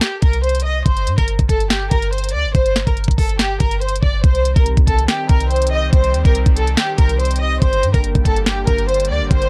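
A bowed violin section and a trap drum kit open this menacing, eerie hip hop excerpt together, with the violins playing a smooth, vibrato-rich melody between G4 and Eb5, close and up front. The electronic kit knocks and cracks, pairing a knocking kick and sharp snare with crisp hi-hats at 142 BPM in 4/4, felt at half-time. A clean, sine-like 808-style bass arrives at 0.2 seconds, deep and boomy, with a fast attack that decays into dark low tones between G1 and G2 under an open G5 sound. Around 4.2 seconds the harmony moves to C minor and later G minor in C dorian, and a sweeping resonant pad enters at 4.4 seconds, quietly holding evolving, detuned sawtooth chords with ring modulation, a slow attack, long release and lush chorus. The overall sound is dry and gritty, carrying the grain of a hardware cassette recording with little reverb, and the piece is cut from a longer work.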